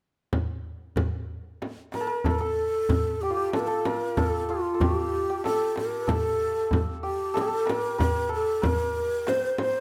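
A small frame drum and a deep, warm tombak open this soulful, melancholic Persian modal passage at 0.3 s, setting a triple metre with a straight feel. At 1.9 s the end-blown ney comes in up front, its low reed-cane tone breathy and bright, with vibrato, a soft attack, lifted highs and a somewhat unsteady line moving between F4 and C5. Alongside it, the hammered santur carries a second line in the same register, its acoustic strings shimmering and ringing near the front of the sound. The tombak sounds as if set in a small room, while the frame drum stays close and dry. A moderate recital-hall reverb and detailed microphones frame the ensemble until the passage, cut from a longer piece, breaks off at 9.8 s.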